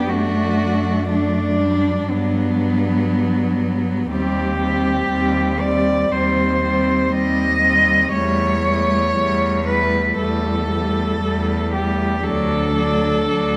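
Solemn and yearning, this lyrical classical passage for a cello ensemble unfolds in a flexible, rubato 4/4 and is cut from a longer piece. Four bowed cellos, each a single player, sound together throughout the 13.6 seconds: the top cello carries the melody with a rich, smooth, even tone and vibrato, set up front yet with a distant quality. Beneath it, a close, warm second line with soft attacks and a close accompaniment part both slide between notes with expressive portamento and vibrato. The bass cello is rich and up front, bowing low with soft attacks, vibrato and its own expressive slides. The harmony moves from D/F# through Gmaj7, Cm/Eb at 4.1 seconds and A7/E before settling on D at 12.2 seconds, all bathed in the wet reverb of a recital hall.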